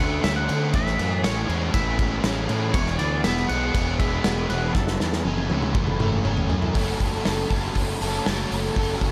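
Dreamy and wistful, this shoegaze and dream pop rock excerpt sets a double-tracked, overdriven garage guitar riff with ensemble chorus and a growly, fuzz-laden fingered bass against a loose, up-front indie drum kit with dark cymbals and a punchy kick, while a clean, twangy electric guitar melody with tape echo floats above until 6.2 s, and a drum fill from 4.8 s carries the music into a new section on F#m at 6.8 s.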